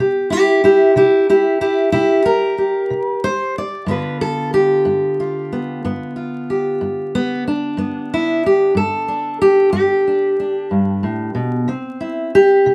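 Acoustic country blues in a slow, straight 12/8 feel, this short passage is laid-back and soulful, cut from a longer piece. A single fingerpicked steel-string acoustic guitar carries everything alone from start to finish, sitting up front with a warm, concert tone and audible finger squeak on the strings. Its range stretches from a low G2 up to D5, giving the solo part both a rich bottom and a bright upper voice. The harmony settles on a C7 before moving to a G7 at 3.9 seconds, then lands on C near 11.7 seconds. The sound has the feel of live players in a single room, with light reverb and a faint vinyl crackle lending an aged, lived-in character.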